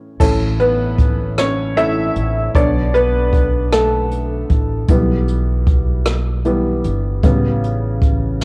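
A home recording on cassette, bathed in studio reverb, gives this cut from a longer six-eight pop ballad a swaying, romantic mood at 51 BPM, tuned to A4 = 438 Hz. A clear, worn, slightly detuned upright piano sits up front from 0.0 s, its short sustain carrying a solo from 0.2 s over chords moving from A through Bmadd9 and Em/B to A7. A thumpy pizzicato upright bass with steel strings and a jazz kit played with brushes join at 0.2 s, the kit giving dark cymbals, a medium-tuned snare, rim clicks and a boomy kick in a natural room sound.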